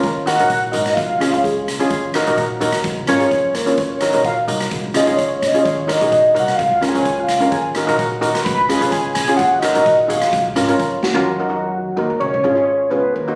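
A tense, dramatic calypso excerpt in Eb minor at 128 BPM opens with shimmering steel pan, woody pizzicato upright bass and a boomy, airy street-band drum kit, joined at 0.3 seconds by a velvety, detuned synth lead with chorus, tremolo and delay that carries a soft solo until the drums take a fill at 11.0 seconds and drop out at 11.3 seconds, all caught on a phone in a moderately reverberant studio room.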